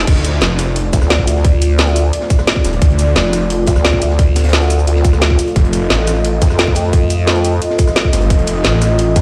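A straight 4/4 pulse at 175 BPM drives this short cut from a dark technical drum and bass track in D phrygian, with the whole passage sitting in the drop and the mood mechanical and aggressive. A tight, up-front electronic kick anchors the groove, joined by a layered drum and bass kit of woody snare, metallic hats, rim click, cabasa and crash, both re-recorded in a small room, while a very quiet crunchy breakbeat kit adds a gritty, saturated hi-hat and high-tuned snare with a rolled-off top underneath. The low end pairs a thick, detuned saw bass, overdriven, chorused and pumping against the sidechain, with a nasal vowel-sweep wobble bass whose resonant formant filter gives it a wobbling, compressed bite. Above them a moody analog pad holds slow-attack chords with a long release and a sub octave, also chorused and pumping. The harmony sits on Dm before shifting to F7 at 5.6 seconds, and the mix carries light digital ambience with the feel of a big sound system playing in a bare stone room.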